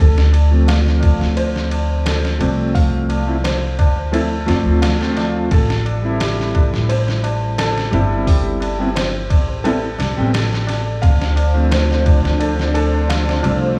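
Trip hop in a smoky, melancholic mood, this short passage cut from a longer piece moves at 87 BPM in a straight 4/4, tuned to A4 = 444 Hz and shifting between Dm7 and Am7. A felt-muted upright piano plays soft, intimate arpeggios with audible action noise, passed through a low-pass filter and tape echo, while a woody pizzicato upright bass with steel strings sits up front. A compressed, pitched-down sampler-style drum kit brings a thumpy kick, a medium-tuned snare, hi-hat and ride cymbal, and a low-tuned tabla with a short ring taps quietly in the background. A dark, clean, fingered electric guitar adds accompaniment through tremolo, low-pass filtering and tape echo, and both the guitar and the piano carry a filter sweep throughout. At 11.0 s a vintage string machine with cellos enters on slow-attack sustained chords, full and sawtooth-edged with a sub octave, phaser, ensemble chorus and 12-bit sampler grit. 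The dreamy mix is soaked in plate reverb blended with a small room.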